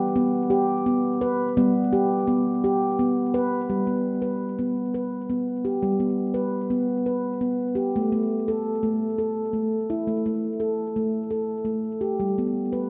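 A solo handpan carries this short excerpt of meditative world music, its stainless steel tone ringing and bright, struck with sharp finger strokes and set up front. The mood is calm and dreamy, moving at 56 BPM in a straight 6/8 feel, within a G major pentatonic frame and a range from G3 to B4. A delay trails the handpan's notes, and a wet church reverb with a long 3.3-second tail surrounds it, giving the sound a spacious, resonant halo. The harmony rests on G, shifts to A5 at 7.9 seconds, and returns to G at 12.2 seconds, with the passage running 12.9 seconds, cut from a longer piece.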